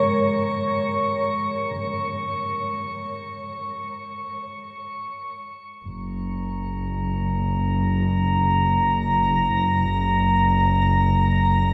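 A long, shimmering reverb bathes this serene, weightless ambient excerpt in F# major, which drifts in free time from a G#sus24 chord to F#. A worn, slightly out-of-tune tine electric piano plays lightly overdriven arpeggios with tape echo until 5.9 seconds. Alongside it, a glassy, ethereal glass harmonica holds a slow-attack texture that fades over the opening, and at 5.8 seconds a dark, lush bowed double bass section enters with smooth vibrato on a low F#.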